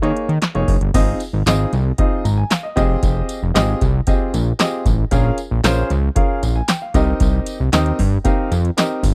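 A fat, detuned sawtooth bass with a filter sweep sits up front in this feel-good, smooth stretch of early-eighties boogie funk, cut from a longer piece, with a straight 4/4 feel. An electronic analog drum machine, re-recorded in a large room, drives it with a deep kick, punchy snare, metallic hi-hats, handclaps and crash cymbal, while a clear baby grand piano accompanies over chords such as Ab6, Fm9 and Bbm7. A jingly acoustic tambourine joins in the background at 0.9 seconds, all within a dry, close studio sound touched by digital ambience.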